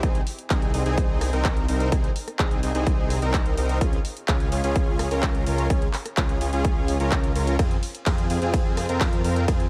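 Euphoric and anthemic, this short cut of festival progressive house drives along at 127 BPM in a straight 4/4, built on a huge, thick supersaw riff that sits up front with sidechain pumping, tape echo and vibrato, moving through Ab/C, Db and Fm. Beneath it a menacing, beating detuned saw bass, saturated and also pumping, holds the low end, while a punchy, overdriven electronic kick sits alongside a layered big-room kit of handclaps, hi-hat, ride cymbal and rim click, also overdriven. The mix is dry and dense, cut from a longer piece and running just under 10 seconds.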